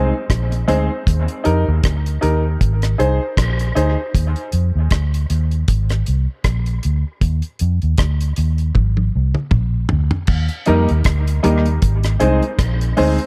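A swung sixteenth-note 4/4 groove drives this laid-back, hazy dub reggae excerpt, where a dark, round, foam-muted fingered bass sits up front under a dry, tight-kicked reggae kit of rim clicks, hi-hat, toms and crash that plays a fill at 8.7 seconds, while a woody, slightly detuned upright piano adds stabs and a clean, compressed electric guitar provides accompaniment, both soaked in dub echo and returning together at 10.7 seconds in a lightly reverberant room.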